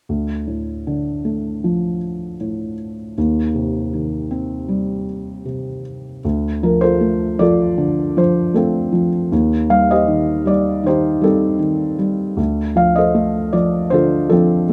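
In a straight, even 4/4, this short folk piece moves at an unhurried pace, cut from a longer work. A felt-muted upright piano carries the melody alone from 0.1 s to 14.7 s, ranging from low D2 up to F5. Its thick felt gives the notes a soft, mellow, muted tone, and the instrument sits up front in an intimate, almost dry space. The harmony moves between Dm and Cm/Eb, shifting to Dm7 as a second section opens at 6.2 s. The mood is reflective and heartbroken.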